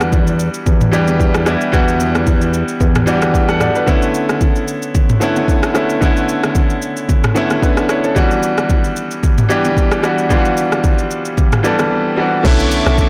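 A late-night, deep amapiano fragment in which a bright, up-front baby grand piano moves through Em9 and Bm11 chords over an electronic afro-pop kit with a deep kick and metallic hats, joined by very quiet bongos and congas, a fat, nasal analog bass that sounds only until 3.7 seconds, a background swell and downlifter from 11.6 seconds, and, at 12.4 seconds, a punchy log drum bass and a floating, bowed string section with sidechain pumping, all captured in a blown-out, overdriven recording with light reverb and digital ambience.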